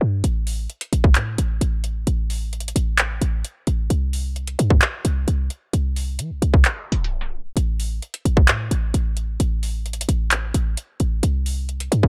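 Menacing and dark, this half-time trap hip hop cut at 131 BPM pairs a punchy, tight 808-style bass with a sine body, noise layer and fast attack against an up-front electronic kit of hard-clipped kick, metallic hi-hats and handclaps that enters at 0.2 s, set in digital ambience and briefly halted by a tape stop from 6.7 to 7.6 s.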